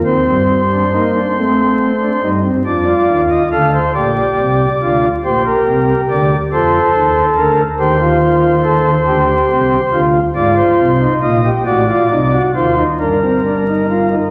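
Moving in a straight 6/8 at 46 BPM counted in dotted quarters, this stately, elegant passage is a baroque-style three-part fugue in the classical tradition, cut from a longer piece. A solo pipe organ plays it on soft flute stops from 0.0 to 14.3 s, its romantic voicing spanning G1 to F5 and colored by a tremulant. The organ sits up front, and its tone is warm. The harmony begins in C minor and turns toward Eb major at 10.4 s, tuned slightly low to A4 = 436 Hz. A wet concert hall reverb with a 2.1-second decay surrounds the organ, and a vinyl crackle runs beneath it, giving the recording an aged character.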